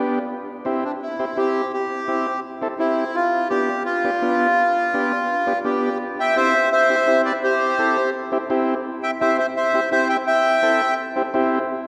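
An up-front, close-miked accordion carries the melody, its full, reedy voice showing a slow beating between its reeds as it enters at 0.8 seconds and plays through to 10.9 seconds. Beneath it, a vintage combo organ provides clean, present accompaniment from the very start, moving between B3 and A4. The music is a sunny, danceable Latin tune in C major at a brisk 168 BPM in straight 4/4, tuned slightly low to A4 = 439 Hz. Its harmony moves from C to G7, then settles back on C as a second section begins at 6.0 seconds. Although the accordion itself sounds dry and close, the recording is set in a church or concert hall with a long, wet cathedral reverb, giving the short clip from a longer piece a spacious glow.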